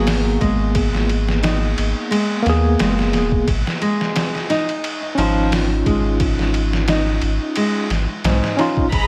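Muffled, overdriven sampler-style drums with a thumpy kick sit up front in this hypnotic, brooding trip hop piece, joined by a deep, round sine sub bass, a clean tine electric piano with medium tremolo and tape echo, and a fingerpicked nylon-string guitar whose arpeggios carry gritty 12-bit sampler texture and tape echo over G#madd9 and C#add9/G# chords, set in a dry space under vinyl crackle until an intimate, sul tasto violin section enters at 8.9 s.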